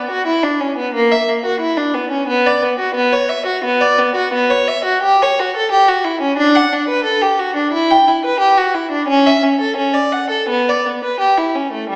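A supple rubato in common time gives this flowing, dance-like baroque-style suite movement its gentle sway. A single bowed violin carries the whole 12-second passage, its rich, smooth tone marked by vibrato and an even touch as it ranges from G3 to G5. The violin sits up front, yet the recording places the listener further back in a recital hall whose wet, lingering reverb surrounds the line, with a small-speaker quality to the sound.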